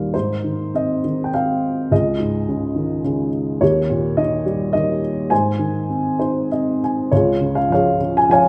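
A dark, woody upright piano sits up front in this relaxed, lyrical classical solo fragment, its mellow, intimate, slightly boxy tone carrying long sustain and audible action noise as it moves freely in 3/4 at a rubato 95-108 BPM in Ab major, adding a fill from 5.9 s before stepping into a new section at 7.1 s, set in a wet recital hall reverb.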